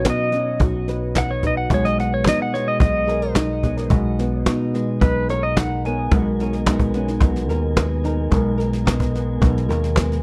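A dark, lightly reverberant folk piece with a pastoral, peaceful mood opens on a twangy pedal steel guitar solo with fingerpicks, slide and volume swells, tape echo trailing it up front, over fingerpicked nylon-string guitar, a woody upright piano's background arpeggios, a round, punchy fingered electric bass, a brushed drum kit with fat snare and punchy kick, and a close cajon played with soft hands, until the steel stops at 6.1 s and a flute-like tonewheel organ slips in with sustained chords through a slow rotary speaker.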